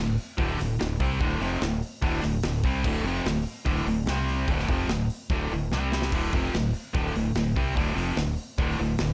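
A bright, double-tracked high-gain guitar drives this relentless, aggressive heavy metal excerpt, churning through a picked riff that shifts between Dm and C5. Beneath it, a growling, round fingered electric bass with overdrive fills out the low end, while a polished, airy studio drum kit with a medium-tuned snare, punchy kick, hi-hat and crash cymbal joins at 0.2 seconds and breaks into a short fill at 5.7 seconds. The straight, steady 4/4 pulse sits in a dark production with light reverb.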